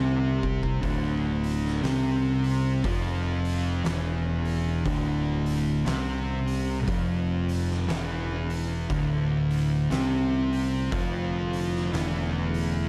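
Hypnotic and brooding, this stoner and doom metal excerpt moves with a heavy, swung 4/4 gait, opening on a drum fill while a very quiet, ominous, wave-folded drone rumbles beneath until 0.8 seconds, then returns at 11.2 seconds. Two thick fuzz guitars carry the riff, one dark and up front, the other warm, over a growling picked electric bass that is bright, overdriven and punchy. The oversized low-tuned acoustic kit, gritty and saturated, brings a fat snare and punchy kick in a pumping stone room, and the whole mix sits in a dark production with large studio reverb.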